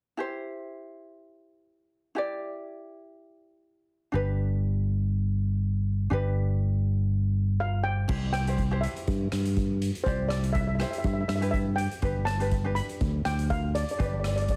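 Heavily compressed, radio-style sound with a touch of reverb frames this carefree, bouncy calypso cut from a longer piece at 122 BPM in C major, where a fingerpicked acoustic ukulele with plate reverb opens over C and G chords, a growly, up-front fingered electric bass joins at 4.1 seconds, a shimmering, mellow steel pan played with soft rubber sticks takes the lead at 7.6 seconds, and a polished street-band drum kit with a boomy kick, hi-hat, rim clicks and crash cymbal drives the second section from 8.1 seconds.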